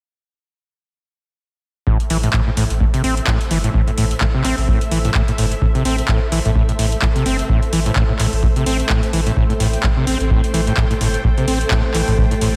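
This short excerpt sounds dreamy and soaked in a lush hall reverb, a hypnotic, gritty slice of acid house at 128 BPM in A minor, swinging its 16ths and resting on a single A minor chord. The parts arrive between about 1.9 and 2.1 seconds, led by a squelchy, distorted acid bass riff placed up front, its sawtooth tone resonant, fast-attacking and decaying, with a filter sweep, sidechain pumping and a diffuse ambient delay trailing behind it. Beneath it, a deep, round sine sub bass holds the low end between G1 and A1, pumping with the sidechain as well. An electronic kick drum with a deep, tape-warm body drives the groove, joined by an analog drum machine playing handclaps and metallic hi-hats that sound re-recorded in a small room. Above it all, a vintage string machine spreads full, bright sawtooth chords with a sub octave, slow attack and long release, shimmering with ensemble chorus and breathing with the sidechain until about 12.6 seconds.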